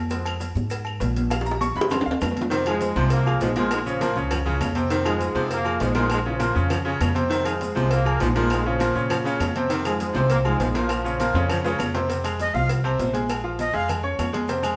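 A live band plays in a stone room with a wet reverb, in this passionate, driving salsa cut from a longer piece. A brilliant, worn concert grand piano with audible action noise sits up front beside a woody pizzicato upright bass, joined by tight cowbell and bongos and, further back, high-tuned congas, ringing agogo bells and timbales, grainy maracas and claves. From 2.5 seconds a forceful baritone saxophone plays a second line in the background, and at 2.7 seconds a punchy trombone section enters to carry the melody. After a drum fill, a breathy, reedy jazz flute takes a short solo from 12.4 seconds.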